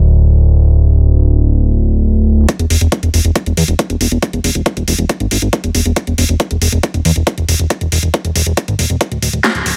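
A straight 4/4 pulse at 138 BPM drives this alien psychedelic trance fragment, tuned to A4 = 438 Hz. A fat analog bass opens alone, its sawtooth and square-wave tone thick yet mellow, with a fast attack, sustained notes and a moving notch, sitting up front between D1 and E2. At 2.5 seconds the drums arrive and a build-up begins: a layered electronic kick with a knocking, high-pass-filtered punch, and a drum-and-bass style kit of cracking snare and bright hi-hats. Both drum parts carry overdrive and a touch of studio ambience, and they sit up front alongside the bass. The mix stays dry and close, and a drum fill at 9.4 seconds closes out the driving passage.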